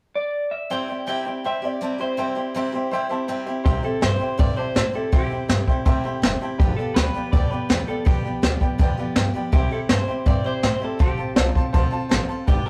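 A rough rehearsal-room recording with warm saturation carries this rollicking, upbeat rockabilly excerpt at 163 BPM in C major, where a twangy, slightly broken-up electric guitar leads the melody through spring reverb and analog delay, a mellow upright piano with audible action noise and a bright dreadnought acoustic guitar supply accompaniment from 0.7 seconds, and a growly pizzicato upright bass and an up-front brushed drum kit with a boomy kick join at 3.7 seconds, the piano adding fills as the harmony moves from C to G7, back to C and on to F.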